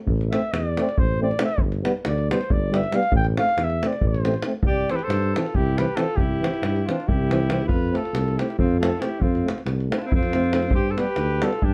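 A smooth-topped flugelhorn leads this restless, bittersweet Balkan brass band excerpt in 7/8 at 276 BPM (eighths), moving from A minor to C major at 4.6 s over a punchy, up-front tuba and a deep, acoustic davul, with a vintage euphonium in the background and a soft-attack trombone, while a clear alto saxophone with vibrato adds a second line from 4.7 s, set in a dark, lightly reverberant production.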